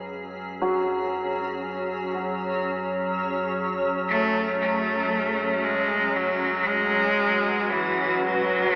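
A clear, focused cello enters at 4.1 seconds with a bowed, vibrato-tinged melody, sitting up front in this unsettling, desolate dark ambient drone cut from a longer piece. Around it, a cloudy granular pad, also up front, fades in with blurred, evolving sustained chords while a warm grand piano traces low arpeggios through a diffuse delay, and a deep, ominous drone rumbles in the background. The whole is bathed in a huge, wet reverb and given an AM radio sound.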